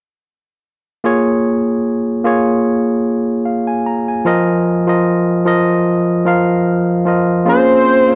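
A barky, lightly overdriven tine electric piano opens this bittersweet, silky soul excerpt at 1.0 s, sitting up front through a combo amp as it moves from Bbm7 to F7sus4 at a relaxed 75 BPM in Bb minor with a gentle sixteenth-note swing. At 7.5 s, as the chords return to Bbm7, a fat, detuned sawtooth analog lead with a sub octave, filter sweep and vibrato steps forward to hold a sustained C5 melody note. A moderate echo chamber reverb and a dark, warm production lend the whole its depth.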